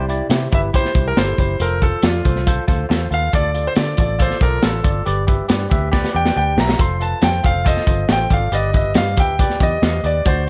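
A straight 4/4 groove at 139 BPM drives this joyful, danceable slice of uptempo 1960s-style soul, where a crunchy, saturated breakbeat kit with a punchy kick and high-tuned snare sits up front, joined by a round, foam-muted fingered electric bass. A barky tine electric piano with phaser supplies accompaniment, and a brilliant, polished concert grand piano solos on the melody, all in a small, lightly reverberant room, with a drum fill from 5.9 to 6.8 seconds over chords moving through C, F, Dm and G.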